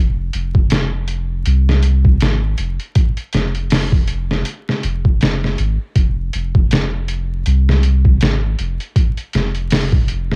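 A dry, cassette-bound home recording with a bed of vinyl crackle sets a lo-fi frame for this brooding, hypnotic trip hop fragment, cut from a longer piece. It moves at 80 BPM in 4/4 with a 57% swing on the sixteenths, sitting in F minor with tuning at A4 = 441 Hz. A soft dub sub bass opens at 0.0 seconds, placed up front and ranging from F1 to C2; its deep, round tone blends triangle and square waves, with a fast attack and long, mellow sustain. At 0.3 seconds a sampler-style drum kit joins, also up front, built from hi-hat, a thumpy kick and a medium-tuned snare. The drums sound compressed, pitched down and gritty, with a tape-warm, small-room character from being re-recorded, and both parts carry on together until the fragment ends at 10.4 seconds.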